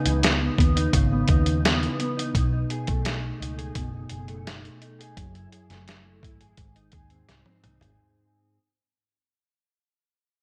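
A gritty, compressed, sampler-style soul drum kit sits up front in this hazy, wistful indie and bedroom pop excerpt, its thumpy kick and medium-tuned snare joined by hi-hat and toms, with a drum fill from 7.3 to 8.0 seconds. A dark, clean, mellow electric guitar, fingered and treated with ensemble chorus and vibrato, carries the accompaniment through C#m9, B13, F#m9 and G#, while a round, punchy, foam-muted vintage electric bass plays beneath it. A moderate plate reverb adds digital ambience, and the passage fades out across its 8 seconds.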